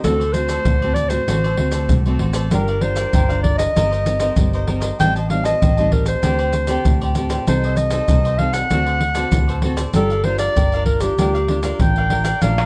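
Samba and choro in G minor at 97 BPM, this lively, nostalgic excerpt features a smooth-topped classical clarinet singing the melody up front over crisp picked cavaquinho, a full-bodied fingerpicked nylon-string guitar with finger squeak, a dark, round, foam-muted vintage electric bass, and close, soft-handed maracas, tight surdo, pandeiro and tamborim, all in light reverb as the chords move from D7 through Gm7, Am7b5 and Adim/C back to Gm7.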